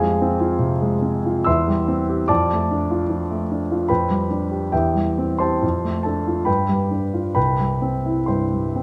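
A clear, intimate grand piano, placed up front with its action noise audible and a natural tone, plays alone in this short excerpt from a passionate, warm romantic character piece in C major, moving in a rubato 3/4 at roughly 63-79 BPM across a range from C2 to E6, as its harmony turns from Fm through C/E and G7 to settle on C at 7.4 seconds within a moderate scoring-stage reverb.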